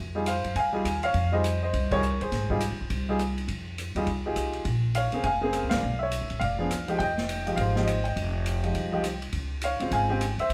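Cool and smoky, this short cut from a longer jazz piano trio piece swings briskly in 4/4 through a minor-key passage that moves from Fm9 to Bbm9, a brief Bdim, back to Fm9 and on to a closing Dbmaj7. The upright bass opens the passage at 0.0 seconds, its gut strings plucked with a woody, thumpy tone low in the register. The upright piano carries the melody from the start, sitting up front with a warm, woody, natural timbre and long sustain that rings across the changes. The drum kit joins at 0.3 seconds, an acoustic, airy small-room sound with dark cymbals, a medium-tuned snare and a boomy kick, the ride, hi-hat and rim clicks placed quietly beneath the others. The full trio hits accents together at 1.9 and 5.7 seconds, and the whole band is heard from further back in a club-like room whose wet reverb wraps the performance in a smoky atmosphere.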